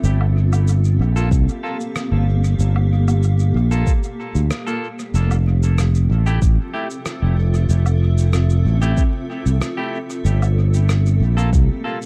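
A cloudy, slowly evolving granular pad opens this deep, meditative ambient dub excerpt, holding sustained Gm9 chords in its own reverb beneath an up-front fingered electric bass with a warm, direct and amped tone and a muffled, compressed bed of electronic shaker, woodblock and rim click soaked in dub echo. At 1.2 seconds a bright, clean semi-hollow electric guitar adds picked stabs that trail off through dub echo, and a deep, tape-warm electronic kick arrives just after, sitting prominently at the front of the mix. The tempo is a steady 94 BPM in a straight 4/4, and the band hits a brief accent just before the harmony moves to Fmaj7 at 5.1 seconds. The progression returns to Gm9 near the end as the blurred, detuned pad sustains over the bass and kick. Vinyl crackle and a heavy reliance on echo rather than reverb give the dry room a dusty, spacious character.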